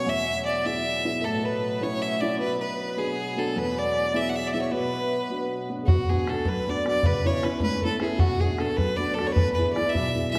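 A 6/8 Celtic jig at 103 BPM in B dorian, this spirited, dark and lively folk passage is cut from a longer piece. A rich, focused fiddle carries the melody up front, with a wooden flute adding an airy, mellow second line in the background and a boxy, slightly detuned upright piano with audible action noise providing accompaniment. A reedy pedal harmonium drone breathes underneath until 5.9 s, when a tight, damped bodhran enters, and the recording sits in a wet concert hall reverb.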